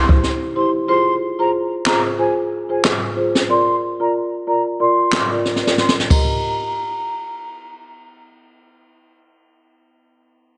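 A small-room recording with light reverb and a soft, rolled-off top frames this sunny, bouncy dancehall excerpt at 92 BPM in Eb major, swung on the 16ths, as a filter sweep runs through the opening section over C, Fm and Bb/F chords. Up front, a woody rosewood marimba played with medium mallets carries the accompaniment through a low-pass filter and sidechain pumping, while a brushed jazz kit adds a boomy kick, high-tuned snare, dark ride cymbal and handclaps, with a fill from 5.5 to 6.1 seconds before it drops out at 6.3 seconds. High above, a breathy, distant wooden flute sings the melody with vibrato, tongued notes and delay until 8.0 seconds, and a very quiet electronic downlifter passes briefly near the start, before the music settles on Eb at 6.1 seconds.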